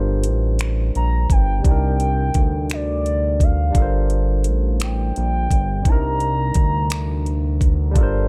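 A barky tine electric piano, clean and heard through a combo amp, opens this short slice of slow six-eight R&B alongside a fat, detuned sawtooth analog bass that sits up front with a fast attack and sustained, thick low notes. At 0.2 seconds a produced electronic drum kit arrives close and present, pairing finger snaps and metallic hi-hats with a knocking kick. From 1.0 seconds a gliding portamento lead carries the melody high above, its mellow sine tone smooth and sustained, shimmering with chorus and vibrato. The harmony sways between Gm11 and Cm9, giving the passage a yearning, sultry mood. The sound is dry and intimate, with little reverb, leaving the bass and drums forward and the piano tucked beneath them.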